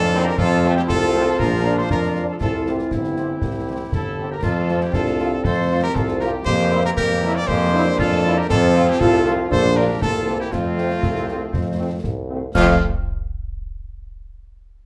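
A military-style march for wind band in F major, this spirited, rousing excerpt moves at 118 BPM in a straight 2/4, tuned slightly low to A4 = 438 Hz. A mellow, close-miked cornet carries the melody with light vibrato, while a tight, clear woodwind section and a pure, hollow wooden piccolo with soft attack add second lines, the piccolo sitting in the background. A very quiet euphonium with vibrato supplies another second line until 12.3 seconds, as a smooth-topped trombone section holds sustained chords and a distant, roomy French horn section accompanies from 0.1 seconds. Up front, a clear tuba anchors the bass, and concert snare drum, clash cymbals with dark cymbal tone and concert bass drum drive the beat from close by. The harmony moves through F, Bb, C and C7, and the whole band is heard from further back in a large studio with a wet reverb.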